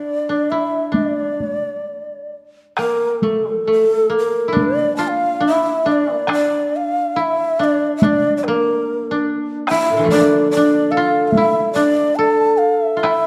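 Set in a wet recital-hall reverb, this austere, solitary fragment of Japanese chamber music drifts in a rubato, unevenly pulsed 4/4, with an up-front, close-miked bamboo shakuhachi carrying the breathy, unsteady melody with vibrato and tongued chiff, a mellow, woody koto played with fingerpicks tracing a dry second line beneath it, and a close, heavy-sticked taiko ensemble entering at 0.9 seconds.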